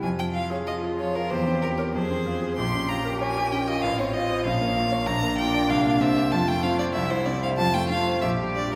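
A clear, up-front violin sings the melody with vibrato over a brilliant concert grand piano with deep bass and long sustain, opening this urgent, dramatic classical-period movement for piano trio in F minor at 95 BPM in 2/4, played with rubato. A rich, focused bowed cello joins with a second line at 0.7 s, and the music turns to F major at 5.1 s. The trio is heard from further back in a concert hall with a long, wet reverb, in a fragment cut from a longer piece.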